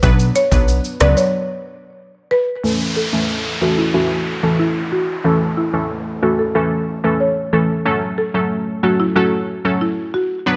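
Sunny and bouncy, this 92 BPM dancehall piece in A major opens with a punchy, funky analog bass, an electronic afro-pop kit with knocking kick, smooth hats, rim click and shaker, and a distant tube shaker in the background, and these drop out within the first 1.3 s for a break. A crystalline, detuned wavetable pluck with chorus and sidechain pumping carries the chords from Bm to A and F#m, while a woody, buzzing marimba with medium mallets plays a dark, dry melody through a low-pass filter and tape echo. From 2.6 s an electronic downlifter and a filter sweep lead into the longer second part, set in a light reverb.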